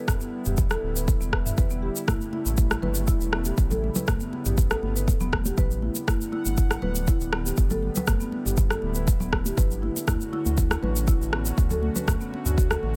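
Afro house at 120 BPM with a spiritual, driving mood, built on a deep, tape-warm electronic kick up front and a produced afro-pop kit of rim clicks and toms in a small room, a grainy egg shaker, and thick-skinned, high-tuned congas entering at 2.1 seconds, while a round, dark analog bass with a ring-modulated edge, woody soft-mallet marimba arpeggios touched with tape echo, and a smooth, detuned chorused pad all pump under sidechain through Em7, A7, Gmaj7 and Dmaj7 in this 13-second excerpt.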